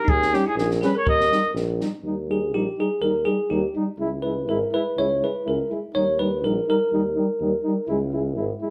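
A swung 2/4 pulse at 123 BPM drives this restless, virtuosic Balkan brass band fragment in Eb phrygian dominant. A compact, dark cocktail kit with punchy kick and high-tuned snare plays only through the opening 1.9 seconds, beneath a vintage-toned flugelhorn melody, while a bell-like, bright tine electric piano sits up front and takes a solo from 2.0 seconds. A distant, roomy tuba holds the bass, and a mellow trombone and a soft-attack, close-miked euphonium add light-vibrato accompaniment, all played live in one room with moderate large studio reverb as the chords move between Eb7, Eb and Dbm.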